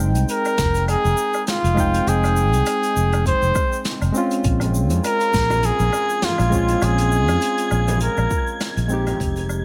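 A clear, up-front flugelhorn with digital delay carries the melody over soft, detuned electric-piano-like synth keys with chorus and delay, a round fretless bass, an airy brushed jazz kit and a deep, tape-warm electronic kick in this relaxed sunset chillout excerpt at 101 BPM with a 16th-note swing in Bb dorian, moving from Fm7 to Bbm7, as very quiet, distant congas and bongos join at 4.6 s and a breathy, wind-like tuned noise texture drifts in at 5.7 s before the fade-out that begins at 7.6 s.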